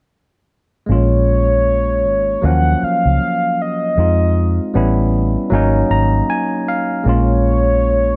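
Neo-soul and R&B in B-flat minor, this short excerpt moves at an unhurried 78 BPM with a sixteenth-note swing that gives it an introspective, late-night mood. A mellow, horn-like synth lead carries the melody from 0.9 seconds, its detuned sawtooth tone soft in attack and sustained, warbling with vibrato, chorus and a slapback echo as a filter sweep shapes it. Alongside it, a barky tine electric piano plays the accompaniment, lightly overdriven through a combo amp, and adds a fill between 5.5 and 7.0 seconds. A vintage muted fingered electric bass, foam-muted, round and punchy, sits up front as the loudest part. The harmony drifts from Bbm7 through Ebm9, Fm7 and A9 to Ab7sus4 before settling back on Bbm7, all in a light reverb.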